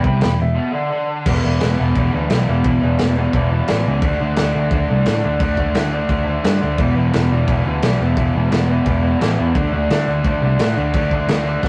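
A clean, fingered lap steel slide line sounds at the start of this raw, menacing garage rock excerpt at 173 BPM and stops at 1.1 s during a short break, while a bright, overdriven, double-tracked guitar riff and a round, punchy picked bass sit up front over a crunchy, gritty breakbeat kit with dark cymbals and a tight kick, captured as a rough rehearsal-room recording with cassette-tape character as the riff alternates between E5 and D5 chords.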